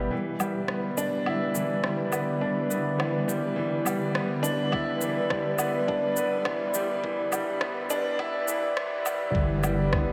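Piano and strings electronica in G major at 104 BPM, this luminous, tender excerpt builds over a G6 chord, with a bright baby grand piano riff sitting up front, its action noise audible, alongside a blurred, evolving granular cloud pad and a deep, rumbling detuned saw bass, both pumping with sidechain. Layered electronic shaker, woodblock and rim click enter at 0.4 seconds, and a muffled, thumpy, pitched-down kick joins at 4.7 seconds. The whole dreamy mix is soaked in a cathedral reverb.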